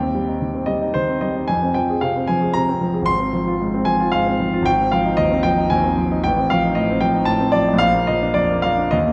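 Warm and lyrical, this brief fragment of a romantic character piece for solo piano unfolds in triple metre, its beats stretched and eased with expressive rubato. A clear concert grand carries everything alone from 0.0 to 9.1 seconds, ranging from a deep bass Ab1 up to C6. The instrument sits up front with a polished, present tone and short sustain, while a wet concert hall reverb and a dark production surround it with a soft, enveloping glow. The harmony drifts from C minor over Eb through a stretch of F minor colours, including Fm7 over Ab. It then turns to F7 over A and arrives on Bb at 7.8 seconds, as if leaning toward the next phrase of the longer work.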